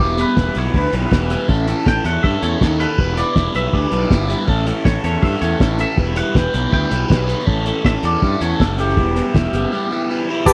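Indie rock with an upbeat, jangly drive, cut from a longer piece and set in a dry, close 1970s-style studio with small room ambience, where a twangy, clean guitar melody carrying lush chorus and tape echo rides over a double-tracked, phaser-tinged overdriven guitar riff. Underneath, a punchy fuzz bass and a cloth-damped, muffled drum kit with a fat snare, tight kick and dark cymbals push through a loop of Em and A chords that briefly colours to A6. At 10.5 s, a reedy combo organ with heavy vibrato arrives up front on sustained chords, joined by a grainy egg shaker.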